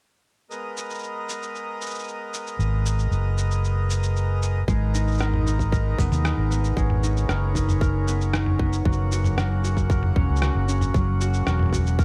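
Folktronica with a wistful, intimate mood, this excerpt opens with reedy, smooth accordion chords over a muffled, pitched-down lo-fi sampler-style drum kit of rim click, shaker and toms, roughened by overdrive. A round, punchy fingered electric bass enters up front at 2.6 seconds, and at 4.7 seconds a bright, ringing concert harp joins with fingerpicked arpeggios under a low-pass filter sweep and digital delay, alongside a tight, overdriven electronic kick. The production has a dark digital ambience, with the harmony moving from G#madd9 to F# later on.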